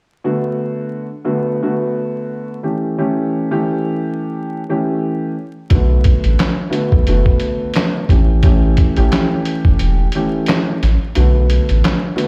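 This moody, tough boom-bap hip-hop cut opens at 0.2 s with a dark grand piano, its mellow, boxy voicings filtered at both ends and sitting up front as it moves between Bm7 and A7 in B minor. At 88 BPM in 4/4, a sampler-style trip hop drum kit and a soft dub sub bass arrive together at 5.7 s. The drums carry vintage 12-bit grit, sounding compressed, pitched down and muffled, with a thumpy kick, a medium-tuned snare, hi-hat and handclaps, all given a tape-like glow and a swung 16th-note feel. Beneath them the sub bass is deep and round, a sustained, fast-attack tone close to the front of the mix. After a short break, the kick drops out at 11.2 s as the piece shifts into a new section, all heard with vinyl crackle and the air of a big sound system in a bare, reverberant room, before the excerpt ends.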